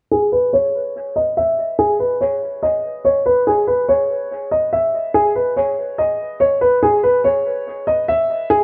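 Hip hop at 143 BPM in 4/4 with a half-time feel, this brief, dark and brooding cut from a longer piece rests on a single concert grand piano carrying the melody from 0.1 to 8.6 seconds, pitched between G#4 and E5 and tuned to A4 = 439 Hz. The piano sounds mellow and boxy with deep bass, sitting up front through a low-pass filter and dub echo, and a filter sweep runs across it for the whole passage. Light studio reverb and an echo-heavy mix give the figure a shadowy, lingering space.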